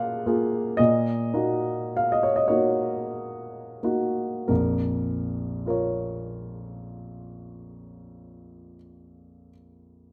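Set in a moderate large-studio reverb, this brief fragment of a wistful, melancholic Romantic nocturne features a solo grand piano, warm and up front with short sustain, in Bb minor and 3/4 at a rubato 41-59 BPM, slowing through its opening 4.5 seconds as the harmony moves from Bb7 to Ebm/Bb before settling on Bbm.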